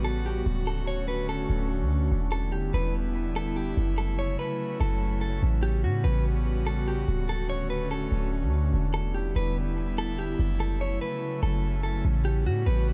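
Ethereal and melancholic, this short atmospheric cloud-rap passage, cut from a longer hip hop piece, moves with a slow half-time feel in 4/4. A deep, boomy 808-style bass sits up front. Its sine tone carries a noise layer, with a fast attack that decays into a mellow tail. An airy, breathy pad holds soft sustained chords through the full 12.9 seconds, its detuned sawtooth and triangle layers shaped by a slow attack, long release and chorus. Above it, a dark, clean electric guitar plays a compressed, picked melody trailed by digital delay, while the harmony cycles twice through Dmaj7, Em7, F#m7 and A13 in a dry, warm, shadowy mix.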